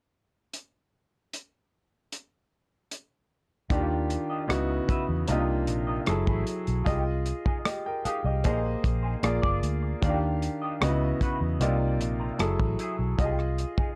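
A dry, dark soul drum kit with a tight kick, hi-hat and rim click opens this lush 1970s-style soul excerpt on its own, its top rolled off and placed up front. At 3.7 seconds a clear, intimate baby grand piano with audible action noise and plate reverb enters alongside a round, punchy, foam-muted fingered bass and a slightly broken-up, lo-fi electric guitar riff through wah, moving over rich chords such as Ebmaj9, Dbm11 and Gbm9. The production is dark with light reverb, giving the piece a warm, lush mood.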